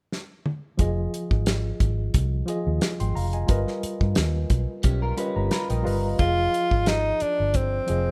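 Smooth and bittersweet, this short excerpt of lush 1970s-style soul at 89 BPM with a light 16th-note swing opens on a drum fill from a fat-snared, tight-kicked kit before a worn, slightly out-of-tune, lightly overdriven tine electric piano and a dark, round, foam-muted fingered bass settle over Fm7 and G7alt, a slightly broken-up guitar through a small old amp adds a chorused riff at 4.8 seconds alongside a piano fill, and a warm, subtoned tenor saxophone with light vibrato and scooped notes takes the melody up front from 6.2 seconds in a rough, small-room home-demo sound.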